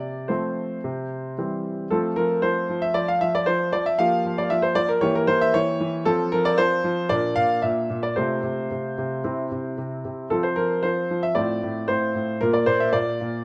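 Close, detailed microphones and a light touch of reverb place a clear concert grand piano up front, its sound open and its low register carrying a deep bass. The music is a cheerful, playful classical-period sonatina in F major, moving at 115 BPM in a straight 4/4, tuned slightly high with A4 at 441 Hz. The piano plays alone throughout, ranging from A2 up to F5 across the 13.4 seconds of this passage cut from a longer piece. A brief opening phrase moves from F over C to C before a new section begins at 1.9 seconds on F. The harmony then travels through Gm7 over F and an Edim7 before returning home and turning toward Bb, then F over C, C, F once more and F over A. It ends on Bb.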